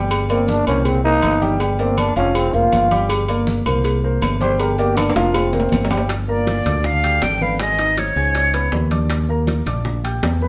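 Sultry and driving, this Afro-Cuban jazz excerpt in straight 4/4 opens on a growling trombone solo, raspy and gritty with a soft attack and a vintage jazz voice. Underneath, a punchy, up-front fingered electric bass anchors the low end while a warm grand piano with short sustain supplies the accompaniment. The percussion is dense: ringing metal-shelled agogo bells and timbales sit close and dry, round low-tuned cowbell and bongos add body, thick-skinned congas played with hard hands sit in the background, and grainy, mellow maracas shimmer until 6.1 seconds. A drum fill at 5.0 seconds leads into a new section, where a breathy, bright concert flute enters up front at 6.3 seconds with a tongued, straight-toned and slightly unsteady melody above the trombone's second line. The band sounds like it is playing live together in one room, bathed in a wet studio reverb as the harmony moves from minor chords toward brighter major-seventh color.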